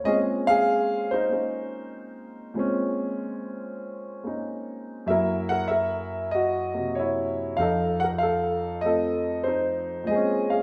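A natural, up-front grand piano carries this brief, smoky, late-night solo jazz fragment in B-flat minor at a swung 96 BPM, moving from Bbm9 through Gb7 and F7 back to Bbm9 across about 10.6 seconds, framed by the lingering 1.4-second reverb of a stone room.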